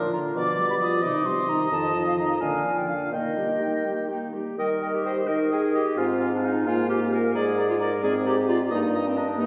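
Spirited and lively, this excerpt from a quick classical-period movement for wind quintet moves at 87 BPM in a rubato 6/8 in Eb major, with an airy, metallic flute singing the melody with vibrato from 0.1 s above a warm, lightly vibrant oboe second line, a clear, soft-edged clarinet and a mellow, vintage-toned French horn in accompaniment, and a bassoon bass, the quintet heard from further back in a wet concert hall with a 1.8-second reverb.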